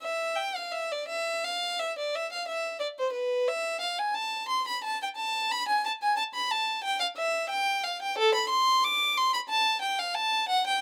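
A classical, baroque-style suite movement for unaccompanied violin, this short section taken from a longer piece unfolds in 3/4 at around 89 BPM with a flexible, rubato feel. The mood is introspective and solemn, carried entirely by a single bowed violin that plays alone from 0.0 to 10.8 seconds. Its tone is clear and smooth, colored by vibrato and sustained with an even, steady hand as it moves between A4 and D6. The instrument sits up front, captured by close, detailed microphones. A light reverb gives the solo line a gentle sense of space while keeping the intimate, contemplative character intact.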